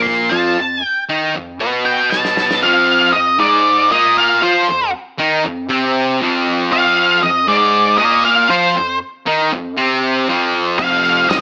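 An AM-radio-style recording with a light small-room reverb carries this bittersweet, restless quiet-loud alternative rock passage at 118 BPM, cut from a longer piece, where a dark, up-front octave-fuzz lead guitar with slapback echo takes a half-time solo over a thick, bright, double-tracked fuzz guitar riff in F. A loose indie drum kit with a tight kick and rolled-off top plays until a fill ends at 2.6 seconds, when the riff moves to an F5 power chord, and the growly, punchy picked bass and the drums return together at 10.8 seconds.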